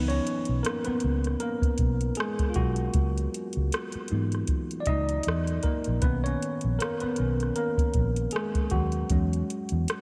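A soulful neo-soul R&B piece at 78 BPM, with a swung 16th-note feel, opens on a worn, slightly out-of-tune tine electric piano. Lightly overdriven through a combo amp and coloured by lush chorus and slapback echo, it takes the solo up front over chords moving from C#m11 to Bmaj9 at 6.0 seconds and E69. Beneath it, a dark, round, foam-muted fingered electric bass holds the low end, and from 0.1 seconds a soft vintage analog rhythm box sits up front with a deep kick, metallic hi-hats and rim clicks, all wrapped in light reverb that lends this fragment of a longer piece a warm glow.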